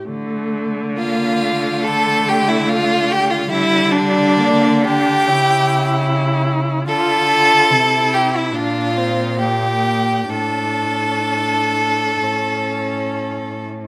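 A rich, expressive viola opens this elegiac, yearning slow movement for string quartet with a bowed accompaniment of soft attacks and portamento, joined almost at once by a smooth, distant cello bass. At 1.0 seconds two violins enter: the upper one sings a clear, focused melody with vibrato, while the second violin's even line sits up front in the blend, and the whole quartet moves with an uneven, rubato pulse. A moderate recital hall reverb surrounds the players in this passage, which is cut from a longer piece.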